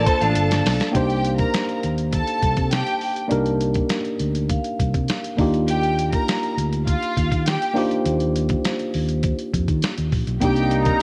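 Muted, con sordino strings carry a veiled, lush second line up front through this cinematic, bittersweet clip of 1970s-style soul, set at 101 BPM in 4/4 in C dorian. A worn, slightly out-of-tune tine electric piano, clean and played through a combo amp, sits just as close with its accompaniment, while a punchy, amped fingered electric bass anchors the low end. A bright, twangy guitar through a small old amp plays a brief picked riff that stops at 0.9 seconds, and a gritty, compressed sampler-style drum kit with a thumpy kick and a medium-tuned snare plays a fill from 0.4 seconds that leads into the main section at 1.0 second. Soft-mallet vibraphone rings mellow in the background with slow motor vibrato, and a vintage horn section lands punchy stabs at 10.4 seconds. The chords move from Bbmaj9 through Cm9 and Ebmaj9 under light reverb and digital ambience.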